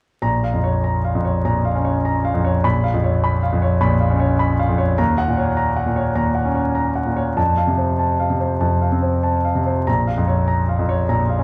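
A clear, intimate concert grand piano with deep bass, long sustain and audible action noise carries this agitated, passionate fragment of a virtuoso classical piano study in B-flat minor, playing alone from 0.2 to 11.4 seconds at a rubato 94-104 BPM in 4/4 through Bbm, Db7/Bb, Ebm7 and F back to Bbm, set in a large studio's reverb with vinyl crackle.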